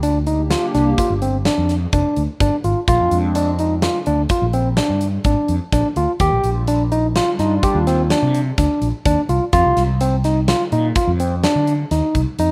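A barky, lightly overdriven tine electric piano plays up-front arpeggios over a growly fretless electric bass and a big rock drum kit with a fat snare and punchy kick, while a hollow, flute-like pad with chorus sits in the background from 0.4 to 9.7 seconds, giving this driving, tense progressive instrumental in 7/4 at 126 BPM in F dorian the feel of a rough home demo in a small room.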